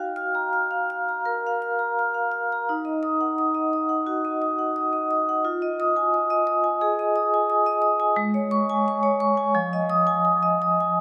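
Reflective and flowing, this contemporary classical piece for solo vibraphone moves with a rubato feel in 4/4, hovering around 79-89 BPM and tuned to A4 = 444 Hz. The vibraphone is struck with medium hard mallets, giving a metallic, ringing tone shaped by a medium motor vibrato, and it sits up front in the mix. It plays alone for the full 11.0 seconds, ranging from F3 to F6. The harmony drifts from Gbmaj7 through Ebm and Fm7 to an Absus4 before settling back on Fm7. A cathedral reverb with a 4.9-second decay lets each note bloom into a long, spacious tail. Cut from a longer work, this fragment feels like a moment of contemplation suspended in a vast stone hall.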